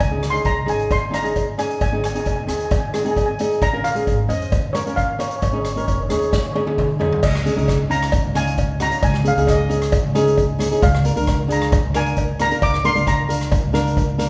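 A straight 4/4 calypso groove drives this carefree, bouncy clip from a longer piece, with an up-front street-band drum kit, boomy in the kick and airy in its big room, and a close, dry cowbell tucked in the background. A shimmering lead steel pan carries the melody over a woody pizzicato upright bass and a dark, fingerpicked flamenco guitar that sits forward in the mix. A drum fill at 6.3 seconds leads into the second section at 7.2 seconds, and the band plays live together in a moderately reverberant studio.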